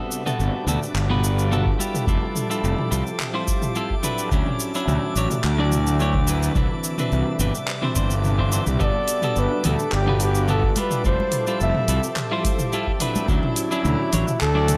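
Sunset chillout in G major at 107 BPM, this blissful, warm excerpt opens with a clean, compressed electric guitar through digital delay, a shimmering, detuned ambient pad and a glassy, drifting harmonics texture high in the background, soon joined by a layered deep house kit of handclaps, hi-hat, shaker and toms and an overdriven, fuzzy fingered bass up front. A deep, tape-toned electronic kick enters at 1.7 s as the harmony moves through Gmaj9, Fmaj9, Dmaj9 and Cmaj9. At 8.8 s a mellow, close-miked flugelhorn takes a jazz-style solo with vibrato and delay, and from 9.7 s dry congas sit quietly behind it, all set in light digital ambience.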